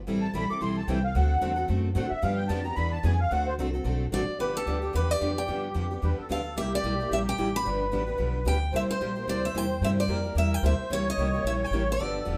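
A brisk, swung 4/4 pulse drives this playful, charming slice of acoustic string swing in the gypsy-jazz manner, anchored by a woody, thumpy upright bass with gut strings, plucked up front in the low register. Two picked steel-string acoustic guitars share the accompaniment, one with a boxy parlour character and the other with the fuller body of a concert instrument and a touch of finger squeak. A reedy musette accordion with a shimmering, smooth tone takes the spotlight for a solo over the opening four seconds or so, then settles into a second line above the band. At 4.1 seconds a third bright, fresh-strung guitar with an auditorium sound enters with the melody, shortly before the tune moves into a new section built largely around dominant seventh chords and a passing diminished chord. The group sounds like a band playing live together in one room, set in a wet studio reverb.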